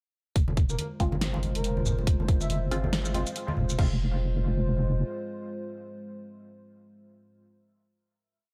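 A detuned, wobbling square-and-sine bass sits up front in this cavernous, heavy deep dubstep piece in F minor at 140 BPM in a swung half-time feel, joined by a tight layered kick, a tape-warm deep house kit with fat snare, shaker, hats and crash, soft-handed background congas, a breathy flute-like lead with vibrato and dub echo, muted sawtooth chord stabs through phaser and lush chorus, and a moody wave-folded analog pad, building from 0.4 seconds until 3.8 seconds before resolving into a final chord carried by the pad and stabs to 7.4 seconds.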